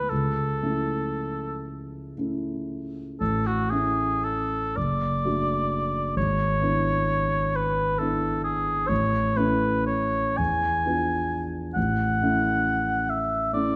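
A warm, tender oboe with light vibrato sings the melody up front in this slow, rubato romantic classical excerpt in 6/8 and A major, moving at about 37-46 BPM in dotted quarters over a dark, mellow and intimate grand piano accompaniment with audible action noise, both heard in a reverberant recital hall.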